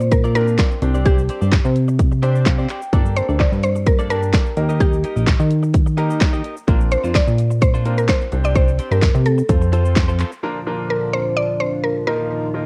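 Summery and euphoric, this 128 BPM dance-pop excerpt in Bb major pairs a woody, round FM synth pluck melody, touched with chorus and analog delay, with a clean, direct-recorded electric guitar riff, a glossy, dark synth bass that pumps under sidechain, a punchy, up-front house drum kit of kick, snare, handclaps, hi-hat and shaker, and clear grand piano accompaniment that adds a brief fill at 2.2 s, in a home recording where most parts carry a cassette-tape feel, before the drums and guitar drop out at 10.4 s, the bass just before, and a shimmering, detuned pulse-width pad swells in with slow-attack sustained chords.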